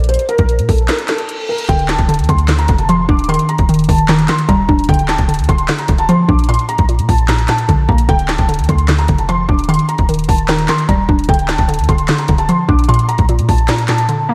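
A half-time trap groove in four drives this brooding, melancholic hip hop fragment, cut from a longer piece, with an overdriven drum kit sitting up front: a hard-clipped kick, sharp snare, bright hi-hats and handclaps. Beneath it, a deep, boomy 808-style bass with a sine body and a noise layer holds the low end. A felt-muted upright piano carries the melody in a soft, intimate voice, its thick felt and audible action noise blurred by analog chorus and a diffuse ambient delay. After a brief break, a reverse cymbal leads into the entry of a hollow, bouncy square-wave pluck at 1.7 seconds, its detuned, ring-modulated accompaniment shaped by a filter sweep and chorus over a dark cycle of Dm, Ebmaj7, Dm and Bb. A lush hall reverb and vinyl crackle soak the mix in a dreamy haze, and the kick falls silent at 13.7 seconds near the end.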